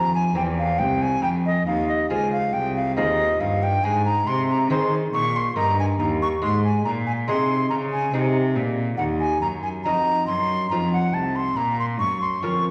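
Introspective and grave, this brief excerpt from a baroque-style sonata movement with continuo moves in an unhurried triple metre, its harmony settling toward a minor-key close around 11.6 seconds. An airy wooden flute with a straight, tongued tone carries the melody up front, while a close, reedy cello with a gut-string, period-style sound supplies the bowed bass line and a delicate fingerpicked lute with doubled gut strings fills in the accompaniment more softly beneath. A recital hall's lingering reverb surrounds the trio.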